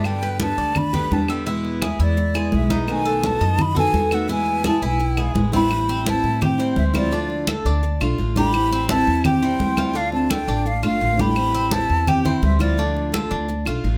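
Nostalgic yet danceable, this Cuban son and guajira piece in A minor moves at a brisk 170 BPM in a straight 4/4, cut from a longer performance. A breathy concert flute carries the melody up front, its tongued, expressive phrases shaded with vibrato and lifted highs, while a dark, thumb-plucked nylon-string guitar traces a small second line beneath it. A picked steel-string acoustic guitar with a concert tone supplies accompaniment, and a Cuban tres adds metallic, double-strung arpeggios with some octave-doubled strings. Underneath, a pizzicato upright bass on gut strings gives a woody, thumpy foundation, congas played with hard hands sound thick-skinned, compressed and saturated, and claves tick woodily in the background. The harmony shifts at 5.7 seconds from a G, E and B7 passage into a rocking alternation of Am7 and Dm, all captured with close, detailed microphones and light reverb.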